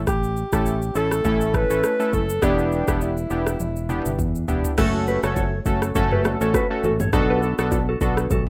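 A round fingered electric bass opens this smooth, hypnotic afrobeats excerpt at 102 BPM with a light 16th-note swing, joined at once by a breathy, scooped alto saxophone melody with delay, a deep-kicked, overdriven electronic drum kit with rim clicks, shaker, toms and crash, and up-front vintage analog keys with a chorused, detuned sawtooth warble over A and Em7, before a drum fill leads at 4.8 seconds into a section on F#m and Bm7 where a dark, clean, compressed electric guitar riff and very quiet, soft-handed congas and bongos enter, all in a dry, rough home-demo mix.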